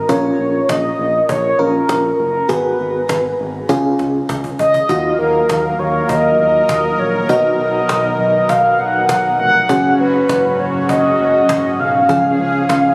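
Synth-pop in a nostalgic, bright mood, cut from a longer piece, where a round, horn-like synth lead with chorus, slapback echo and shimmer reverb carries the melody over a tremolo-laden FM electric piano, a smooth synth bass and a woody, close cajon that plays a fill from 3.7 to 4.9 seconds, before a bold, brassy analog pad with a filter swell enters at 4.9 seconds, all set in a lush hall and heard as if captured on a phone in the room.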